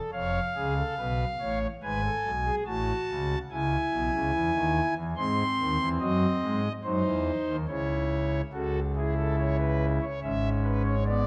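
A solo pipe organ on thick foundation stops, voiced in a romantic manner and placed up front, plays an elegant, stately baroque-style three-part fugue in 3/4 at 71 BPM, tuned to A4 = 441 Hz. It moves into a new section at 8.5 seconds, heard through a reverberant recital hall in this short excerpt cut from a longer piece.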